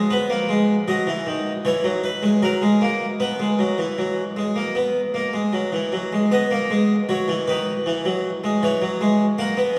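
A brilliant, airy Flemish-style harpsichord with three sets of strings sits up front in this solemn, serious baroque-style two-part invention in straight 4/4, its full, plucked tone ranging from D#3 to F#5 and ringing into a wet cathedral reverb through a short cut from a longer piece that moves into a new section at 6.3 seconds.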